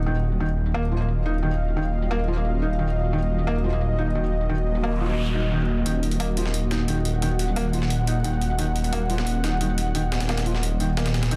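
A swirling, detuned saw bass sits up front on a sustained Eb from the first second, under a deep, moody analog pad with chorus and a felt-muted upright piano playing mellow arpeggios through digital delay, while very quiet metallic electronic hats and tambourine tick beneath, setting a tense, aggressive tone for this dark technical drum and bass cut at 176 BPM in Eb minor. A noise sweep enters at 4.7 seconds, and at 5.9 seconds a gritty, compressed breakbeat kit with a high-tuned snare and filtered hats drops in. The mix is dense and heavily limited, with light reverb.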